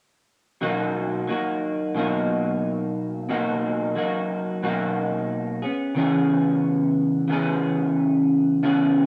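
A twangy, slightly broken-up electric guitar through a small old amp enters up front at 0.6 s, picking hazy, laid-back indie pop accompaniment in B major at 90 BPM, moving from Bmaj7 to C#m7 at 5.6 s, colored by analog chorus, warbly pitch drift and cassette tape in a short, wet booth ambience on this home cassette excerpt cut from a longer piece.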